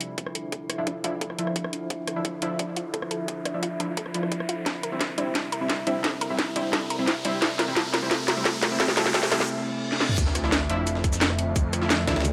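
Dark technical drum and bass at 174 BPM in D minor, futuristic and mechanical, this excerpt builds from an eerie, metallic FM drone, a nasal analog pluck arpeggio and a bold orchestra-hit-like stab, both of the latter filter-swept, over an up-front kit with a cracking snare and metallic hats, a tight electronic kick in the background, and a riser and reverse cymbal leading into a brief break. At 10.2 seconds the drop lands with an impact, a thick, detuned saw bass pushed up front with overdrive and sidechain pumping, and a very quiet, gritty, pitched-up breakbeat layer. A saturated formant-sweep wobble bass enters at 12.1 seconds, all set in a lush hall reverb.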